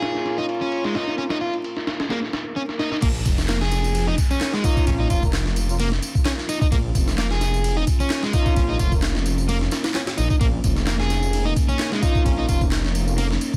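A raw, swaggering breakbeat cut opens on a gritty, pitched-up sampler-style drum kit with a thumpy kick and high-tuned snare, alongside an overdriven hollow-body guitar riff, warm brass section stabs with light vibrato and delay, and a warbling, nostalgic lo-fi pad that pumps softly in the background. A very quiet electronic swell and a drum fill lead into the drop at 3.0 seconds, where a deep, rumbling detuned saw bass arrives up front with layered, overdriven tambourine and handclaps. The brass drops out at 9.0 seconds and returns at 12.0 seconds, all under a dense, heavily limited master with vinyl crackle and light reverb.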